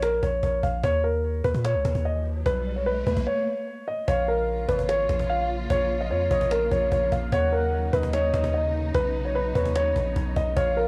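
A half-time trap groove at 148 BPM in 4/4 drives this dark, hard-hitting hip hop piece in Bb phrygian, carried by a woody cajon with faint snares and hard hands, its tone roughened by cassette tape saturation. A long, deep 808-style bass with a sine character and fast attack sits up front, decaying beneath a mellow, vintage concert grand piano that plays the melody with short sustain and a touch of analog delay. The harmony moves from Bbm through Eb5 and Bsus2, and an electronic riser climbs from 2.0 seconds into a brief break just before the second section arrives at 4.1 seconds. There a lush, bowed studio string section enters with expressive vibrato and a smooth top. Alongside it comes a gliding sawtooth-and-sine lead in the background, colored by chorus, phaser and delay, while the chords turn through Ebm7 to Badd9. The whole fragment, cut from a longer piece, carries the intimate feel of a home cassette recording with light small-room reverb.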